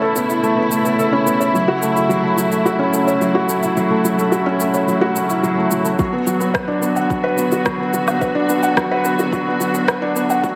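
Luminous and hopeful, this building piano and strings electronica at 108 BPM in 4/4 sets an intimate, felt-muted upright piano riff with audible action noise and digital delay over a lush, woody studio string section that pumps with sidechain, a barely audible round analog bass, and layered electronic shaker, rim click and woodblock from 0.2 seconds, while a deep electronic kick joins at 6.0 seconds as the harmony moves from Aadd9 through F#m7 to Bm, set in a reverberant recital hall sound.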